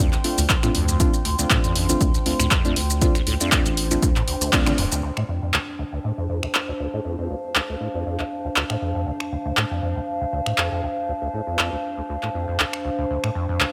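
Acid house at 119 BPM in D minor pentatonic, this gritty, trippy excerpt with a light 16th-note swing opens on a Dm7 drop where a dry, punchy electronic kick, a thick saturated sine sub bass and dark, nasal chord stabs with chorus, tape coloring and delay sit beneath an overdriven, up-front analog drum machine of finger snaps, handclaps, hi-hat and shaker. A squelchy, resonant sawtooth acid bass riff, treated with phaser, overdrive, chorus and delay, runs throughout over a nostalgic, lo-fi, warbling pad that pumps with the sidechain. After the kick, sub bass and stabs finish by 4.9 seconds, a filter sweep moves across the acid bass from 5.0 seconds, all set in a lush hall reverb.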